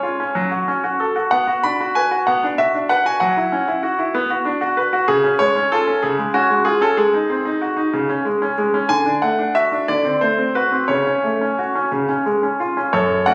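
Elegant and graceful, this short cut from a longer classical-period piano sonatina moves in 6/8 at 58-65 BPM in dotted quarters, shaped with rubato as its harmony travels from F#m through Bm, C#, G#7 and D before settling back on C# near 11.9 seconds. A bright concert grand piano plays alone from F#2 to B5, its brilliant, polished tone sitting up front over a deep bass register. Captured on a phone in a recital hall with moderate reverb, the sound also carries a club-style reverb and compression.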